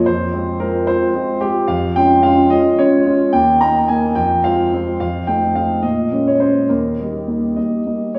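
A warm concert grand piano carries this dramatic yet elegant classical-period sonatina alone, its deep bass, open tone and long sustain sitting up front through the full 8.2 seconds. In a straight 6/8, the harmony moves from F minor through Db over F, F7 and Bb minor seventh before settling on Eb. The piano sounds wet with recital hall reverb, heard from further back in the room with a small room ambience, in a passage cut from a longer piece.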